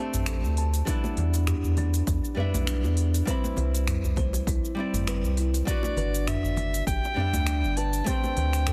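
A fingerpicked flamenco guitar, with its finger squeaks, and a woody, hollow-toned kalimba ringing in the background open this relaxed, wistful sunset chillout excerpt in E minor at 100 BPM, both touched with delay, as a round, deep analog bass sits up front with a filter sweep and a deep house kit of cabasa, finger snaps, smooth hats and toms lays down swung 16ths with softly clipped snare. A punchy, layered electronic kick arrives at 0.9 s, with dry, close congas and bongos played with hard hands tucked behind, while the harmony moves through Em7, Cmaj7 and Gmaj7 before landing on D7sus4. At 5.7 s a soprano saxophone takes a jazz-style solo with light vibrato and subtone, given delay, all set in light small-room reverb and a dense, heavily limited modern master.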